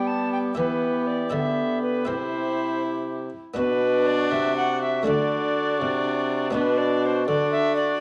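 Courtly and stately, this renaissance-style consort dance moves in a straight 6/8 at 81 BPM, with all five parts playing throughout its 8 seconds over a G, Em, C, Bm, D, Bm progression. An airy, tongued alto recorder with a wooden chiff carries the melody up front, shadowed by a mellow cor anglais second line, both colored by vibrato, while a rich, nasal bowed viola with gut-string tone and a lute-like, muted buff-stop harpsichord, close-miked and dry, fill in the accompaniment. A bright, soft-attacked trombone anchors the bass, and the consort rings in a wet stone room.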